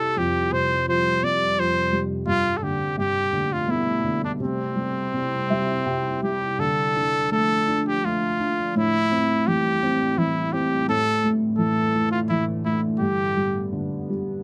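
A gentle 3/4 pulse at about 84 BPM, played with a loose, rubato feel, carries this tender lullaby for children, heard as a short section cut from a longer piece. A clear trumpet in classical style leads the melody up front as a solo voice, ranging from C4 to D5 and falling silent at 13.7 seconds. Beneath it, a felt-muted upright piano supplies soft, boxy, intimate accompaniment with a dark, thick-felt tone, adding a brief fill from 5.1 to 6.6 seconds just before the music turns toward its second section. In the background, a warbly, tape-like pad holds sustained chords with a slow attack and long release, its detuned, nostalgic lo-fi character colored by chorus and its own reverb. The harmony drifts through open suspended chords such as Fsus2 and Gsus4 before settling on C, then moves from 6.6 seconds through Dm and Am7 to close on G. Close, detailed microphones and a light touch of reverb keep the sound gentle and near.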